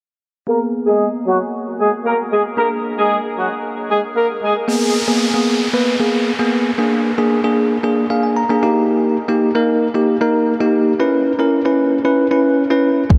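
Soaked in a huge, dreamy reverb, this driving, energetic dance-pop excerpt at 114 BPM in G# harmonic minor opens with a mellow, distant horn section carrying the melody through a filter sweep over G#madd9 and A#7 chords, while a bell-like tine electric piano pumps up front; an electronic downlifter arrives at 4.7 seconds, the piano adds a fill, and a deep, tape-warm electronic kick and a round analog bass appear only briefly at 13.1 seconds.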